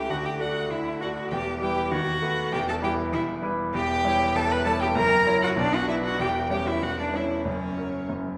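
In a straight 2/4 at 98 BPM, this quick, restless classical-period movement for piano trio is cut from a longer piece and moves stormily through chords such as Em, F#7 and Bm before settling on F#. The bowed violin carries a smooth, even melody with vibrato, while the focused cello sits close and up front with a second line, both strings stopping at 8.1 seconds. The brilliant concert grand, with deep bass, supplies the accompaniment until 8.4 seconds, all within the reverberant bloom of a recital hall.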